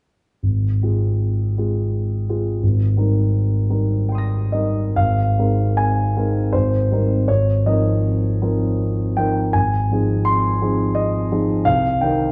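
A warm concert grand piano with deep bass sits up front in this luminous, serene impressionist solo, cut from a longer piece, drifting in a rubato three-four through Ab6 and Cm7/Ab harmonies before moving into a new section at 5.0 s, where Abadd9 and Bb9sus4/Ab colours lead to a close on Cm7 at 11.7 s, set within a wet recital hall reverb and a dark, warm production.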